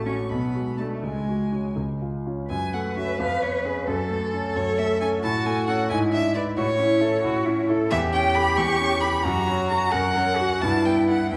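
Quick classical-period piano trio movement in F# minor, stormy and dramatic, moving in a rubato 6/8 at roughly 81-90 BPM counted in dotted quarters. A focused, vibrato-rich bowed violin carries the melody up front while a smooth, even bowed cello sings a second line beneath it, and a warm, natural grand piano, also up front, supplies the accompaniment throughout. The fragment, lifted from a longer piece, shifts into a new section at 2.5 seconds, with all three players set in a wet recital hall heard from further back in the room.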